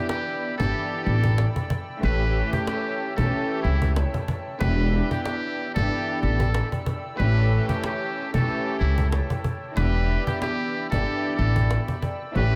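A muted trumpet opens this reflective yet tough boom-bap hip-hop excerpt at 93 BPM in E dorian, its buzzy, breathy tone carrying a jazz-style melody with scooped notes and light vibrato through an analog delay. Bowed studio strings with a reedy, gut-string character and a hollow, flute-like pad with chorus in the background share the opening break, which runs to 4.6 s, as the harmony alternates between Em7 and A7. A woody cajon played with hard hands comes in almost at once, a growly pizzicato upright bass sits up front from 0.6 s over a swung 16th-note feel, and light reverb lends a small-room intimacy.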